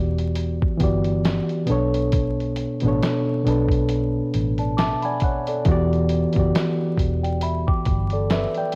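A hazy, reflective lo-fi hip hop fragment cut from a longer piece, moving with a lazy swing in 4/4 over chords that shift from Em7 to Bm7 and back. A reedy, lightly overdriven electric piano sits up front, played through built-in speakers and softened by a low-pass filter and cassette tape. Beneath it, a vintage muted fingered electric bass supplies a dark, round, foam-muted low end until 8.4 seconds. A compressed sampler-style drum kit with a thumpy kick, medium-tuned snare and hi-hat enters at 0.2 seconds, carrying 12-bit grit and the muffled air of a large room. At 4.6 seconds a bell-like celesta joins as a second line, its delicate, sweet felt-hammer tone filtered, taped and trailed by tape echo. Light reverb, cassette home-recording character and vinyl crackle wrap the whole scene in a worn, intimate haze.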